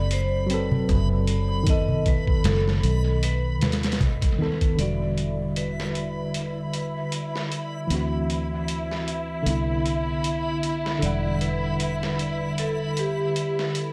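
A swung, unhurried trip hop groove rides on a muffled, pitched-down, tape-warm sampler kit with a thumpy kick and medium-tuned snare, sitting up front and soaked in dub echo, while a round, foam-muted fingered bass anchors the low end and a softly played darbuka sits in the background until 4.2 seconds. Over this dark, smoky bed, a worn, slightly out-of-tune tine electric piano with overdrive and tremolo carries the chords, a bright, ringing vibraphone traces the melody through dub echo, and a reversed, granular swelling texture hovers high. At 4.8 seconds a lush, bowed violin section enters on sustained chords under a filter sweep, thickening the echo-heavy mix of this short cut from a longer piece.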